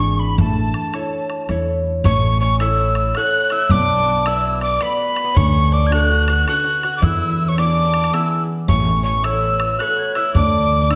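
A breathy, mellow metal whistle leads the melody up front from the first moment, its tongued notes carrying chiff, vibrato and a slightly unsteady pitch with rolled-off highs. Alongside it, a very quiet wooden whistle plays a distant second line with an airy, reedy tone, while a bright concert harp rings out fingerpicked accompaniment and a growly, woody upright bass is plucked up front beneath them. A damped, tight bodhran joins close by at 0.4 seconds, setting a swung, rollicking Celtic waltz in three. At 2.1 seconds an Irish bouzouki enters with a picked second line, its double strings giving a metallic, acoustic shimmer. The cheerful tune moves through major and minor chords, with colouring from an added ninth and a suspended chord near the close, all of it cut from a longer piece. A wet recital hall reverb surrounds the ensemble.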